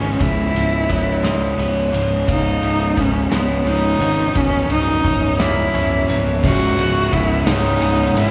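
A rich, nasal cello leads this brooding, cathartic post-rock passage up front, its smooth bowed melody carrying vibrato, while a bright, twangy electric guitar traces very quiet clean arpeggios beneath it. Ringing vibraphone arpeggios, struck with medium hard mallets, shimmer in the background alongside a sludgy, overdriven guitar riff. A round, punchy fuzz bass anchors the low end, and a loose acoustic drum kit joins at 0.2 seconds with a punchy kick, a medium-tuned snare and dark crash and ride cymbals in a pumping room sound. In slow 6/8, the harmony moves from C#m7 through C#7 and F#7/C# before returning to C#m7, as a second, darker distorted guitar riff enters at 6.4 seconds to thicken the build-up. A wet church reverb gives the cut a spacious, hall-like atmosphere as the music gathers weight.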